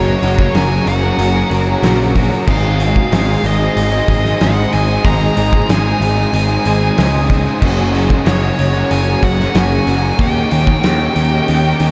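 A fuzzed, punchy picked bass sits up front in this wistful, dreamy shoegaze and dream pop excerpt at 93 BPM in Ab mixolydian, where a nasal lead guitar with a parked wah and diffuse delay sings its melody over three overdriven guitar riffs (one biting with reverse reverb, one lush with chorus, one very quiet double-tracked semi-hollow), a bright, pure organ-like pad of sustained chords, and a distant, roomy indie drum kit with dark cymbals and a fat snare entering at 0.2 s, all moving through Gbadd9, Ab, Gbadd9 and Eb7 in a mix soaked in huge ambient reverb.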